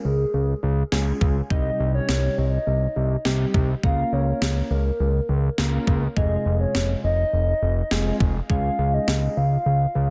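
Melancholic yet driving, this synth-pop excerpt pairs a hollow, woody clarinet-like synth lead carrying the melody with chorus and tape echo over soft, round electric-piano-like keys shimmering with chorus and tremolo, while a fat, nasal analog bass sits up front and a thumpy, overdriven 12-bit drum machine of kick and snare joins at 0.9 seconds, all moving through Db, Cm, Bbm/Db and Fm7 in a dense, heavily limited mix with light reverb.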